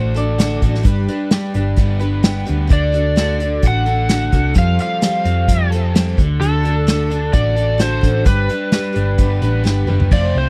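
A picked twelve-string acoustic guitar, shimmering and octave-doubled, opens this open-road folk and heartland rock excerpt alongside a bright, double-tracked overdriven electric guitar riff and a round, hollow-body short-scale bass played with a pick, while a slightly broken-up electric guitar through a small old amp adds a brief second line that ends by 1.1 seconds. An unplugged drum kit, played with bundle sticks in a small, airy room, drives a straight 4/4 at 129 BPM with a punchy kick, medium-tuned snare, hi-hat, toms and dark crash cymbals, sitting up front with the bass. At 2.7 seconds an overdriven slide guitar, played with fingerpicks and carrying tape echo, takes the melody high above the band. The harmony in D mixolydian moves among D, G and Fadd9 chords, and the drums close with a fill at 9.7 seconds. The sound is dry and close, like a 1970s studio recording.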